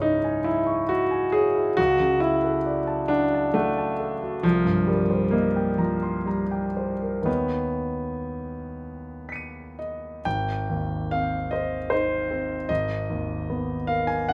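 Dreamy and luminous, this brief passage from a longer impressionist classical work for solo grand piano drifts in a rubato 3/4, its clear, intimate, up-front tone carrying audible action noise and natural detail within a wet stone room, as drifting extended chords give way to a new section at 10.3 seconds.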